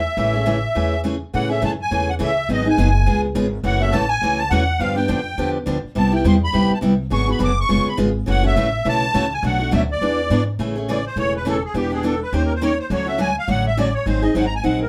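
A fast swing pulse in four drives this short, playful cut from a longer acoustic string swing performance in the jazz manouche style, with a charming mood. A musette accordion carries the melody up front, its reedy, shimmering musette tuning spanning G4 to D6 and taking a solo from 10.6 seconds to the end. A picked steel-string acoustic guitar supplies bright, up-front accompaniment, with finger squeaks audible along the strings. Underneath, a pizzicato upright bass on gut strings gives a woody, dark, thumpy foundation down to E1. The harmony moves through jazzy seventh chords, opening on Amaj7 and passing through Cmaj7 and Dmaj7, all captured as a band playing live in one room with moderate studio reverb.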